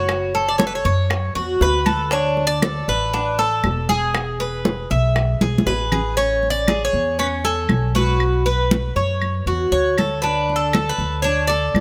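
Latin Cuban son with a guajira lilt, this sunny excerpt from a longer piece sets a bright, picked tres melody with metallic double strings up front against a second tres playing warm arpeggios, over a dark, thumpy pizzicato upright bass. Damped, thin-skinned congas and close, woody claves run throughout, while tight, high-tuned bongos sit in the background until 5.9 s, around a drum fill that leads into the repeated section at 6.2 s. Light reverb gives the small-room sound a gentle glow.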